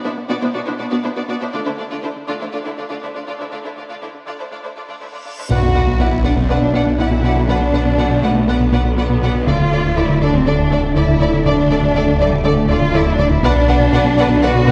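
A straight 4/4 pulse at 121 BPM drives this futuristic, relentless cue from a hybrid orchestral and electronic film score in B minor, cut from a longer piece. It opens on a build-up, with a filter sweep over bowed strings: violins on a second line, vibrato-rich violas with portamento, and lush cellos up front carrying the bass. Beneath them, a punchy, funky analog bass riff with a filter pluck and moving notch sits in the background. A huge, bright reverse cymbal and sub drop arrives at 5.3 s, and the impact lands at 5.5 s, where a higher violin melody enters alongside very quiet, mellow French horns and trombones holding sustained chords. At the same moment, a thick, swirling, saturated detuned saw bass with phaser joins bowed double basses to deepen the low end. The harmony moves between Bm and Dm, and the whole ensemble is heard from further back in a wet scoring stage reverb.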